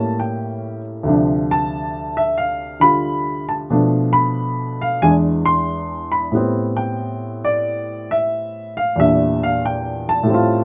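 A warm baby grand piano plays solo jazz in A minor for the full 10.6 seconds of this fragment, sitting up front with a present tone and short sustain across a range from D2 to C6. The mood is smoky and swinging, at 91 BPM in 4/4 with swung eighths, as the harmony moves from A7b9 through Dm7, Bm7b5 and E7 to Am9 at 6.3 seconds before closing on Em7b5. A moderate club reverb frames the piano.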